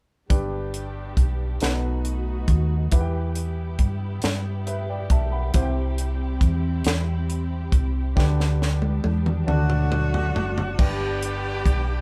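Recorded by a band playing live in one room with a moderate studio reverb, this slow, jubilant and soulful gospel passage in 6/8 is cut from a longer piece. A tight funk drum kit with a high-tuned snare and a round, punchy hollow-body electric bass sit up front, while a woody, vintage upright piano and a bowed string section with soft attack, sul tasto vibrato and a smooth top hold the harmony through chords such as G, B7, Em and C. A drum fill runs from 8.2 to 10.8 seconds, and an edgy, close-miked saxophone section enters at 9.5 seconds with a jazz-style melody.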